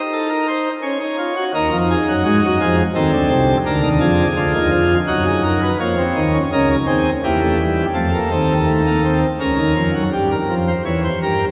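Classical baroque-style three-part fugue in 3/4, contemplative and solemn, played by a solo pipe organ on a full plenum whose brilliant mixtures and chiff sit up front, spanning C2 to Db5 and bathed in a cathedral reverb with a 5.0-second decay, before this brief cut from a longer piece turns to a C7 chord at 10.1 s.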